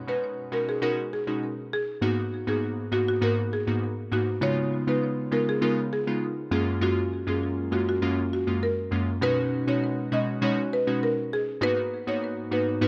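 A dark production sits in a moderate plate reverb, giving this short cut from a longer afrobeats piece a sunny, breezy glow at 100 BPM in a straight 4/4. Glassy digital keys open the track at 0.0 seconds, playing accompaniment from F#2 to F#4 with a warbling, vintage sine tone, a filter sweep and a chorus effect, sounding bright and up front. A buzzing marimba struck with medium hard mallets carries the melody between F#4 and D#5, its woody hardwood bars sounding dry and touched by delay. The harmony moves through B6, G#m7, C#7 and F#maj7, then returns to B6 and G#m7 as a new section begins at 9.2 seconds. Both parts play through to the close at 12.9 seconds.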